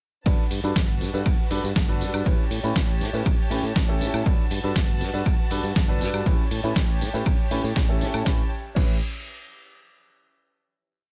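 A four-on-the-floor electronic kick, punchy and tape-warm, drives this sunny, joyful filtered disco house piece, with gritty sampler-style drums adding a fat snare, tambourine, woodblock and cymbals, a bright, growly fingered electric bass jumping octaves, a dark, mellow baby grand piano playing dotted-rhythm chords through a phaser, and a chamber violin section holding soft-attack sustained chords with vintage 12-bit grit. The bass, piano, violins and the kit's cymbals, hats and percussion all pump to the sidechain over a Gmaj9 to A7 drop before a final chord at 8.3 seconds.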